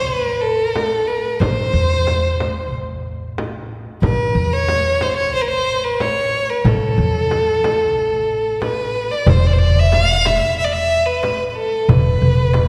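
Stately and warm in mood, this short section of a longer Arabic maqam ensemble piece moves at 92 BPM in a straight 4/4, opening in A maqam saba before shifting to E maqam hijaz at 9.3 s. A single bowed violin carries the melody up front, its soft attack, vibrato and portamento giving the line an expressive quality as it ranges from A4 up to a slightly sharpened F5. Beneath it, a pizzicato upright bass with steel strings supplies a woody low foundation from E1 to E2. A small, bright frame drum joins at 0.8 s, and a crisp, metal-shelled darbuka, close, dry and very quiet, adds its high voice from the change of mode onward. The ensemble sits further back in a wet concert hall with a long, lingering reverb, while the violin and percussion retain a close, intimate presence.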